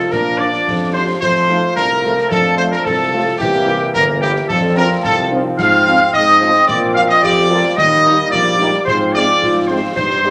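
A mellow, softly attacked trumpet section carries the melody up front from the first moment of this rousing, festive military-style march for wind band in 2/4 at 110 BPM, joined by a clear woodwind line, a dark solo euphonium, warm sustained trombone chords, a mellow tuba bass, and concert snare, bass drum and dark-toned clash cymbals sitting back in a live room. A pure, wooden piccolo with vibrato and rolled-off highs enters at 0.1 seconds as another background line, and a distant, roomy French horn section adds accompaniment from 0.4 seconds. The whole band sits in a wet large-studio reverb as the harmony moves through Bb, F, C7, F5, Fm/Ab, Bb and Eb before returning to Fm/Ab in this short cut from a longer piece.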